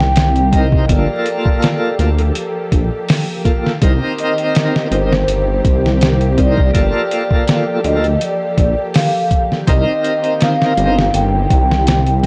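Trip hop with a hypnotic, brooding swing, heard as an excerpt cut from a longer piece: a muffled, pitched-down sampler-style drum kit with a thumpy kick and studio reverb sits up front beside a deep, rumbling detuned saw bass. A soft-mallet vibraphone carries the melody with tape echo and shimmering motor vibrato, over dark, woody bowed strings holding sustained chords that circle between Cm7 and Gm9. A bright, shouting tonewheel organ enters at 0.5 seconds with key click, light overdrive, tremolo and slow rotary speaker, all within a dry, gritty hardware sound laced with transformer saturation and vinyl crackle.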